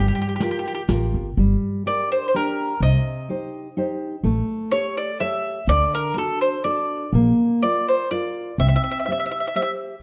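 Dark, reverberant recital-hall sound frames this passionate, wistful cut from a longer Italian folk serenade in G minor at 125 BPM in a rubato 3/4, where a bright, double-strung bowl-back mandolin carries the melody up front over a full-bodied, fingerpicked nylon-string guitar and a woody pizzicato upright bass, while a riq adds close, dry jingles from 0.4 to 1.1 s as the chords move from Gm7 through Cm and A7 to D, Bb and C.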